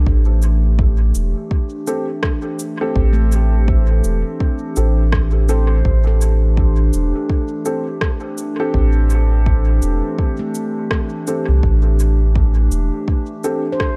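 Swung sixteenths in 4/4 give this short ambient dub excerpt a loose, rolling gait, carried by a deep, tape-warm electronic kick that sits up front from 0.1 s. An overdriven shaker and rim click, re-recorded in a small room, trail dub echo. Underneath, a soft, round sub bass holds the floor until 12.9 s, while a warbling, lo-fi pad sustains a hazy Am7 chord through chorus and its own reverb. A handpan spins ringing, stainless-steel arpeggios under soft fingertips, close-miked and dry yet tucked into the background with an analog delay. From 1.9 s a dark, woody upright piano, slightly detuned and vintage in character, drops muffled stabs through a filter sweep and more dub echo, sealing a meditative, echo-heavy mood.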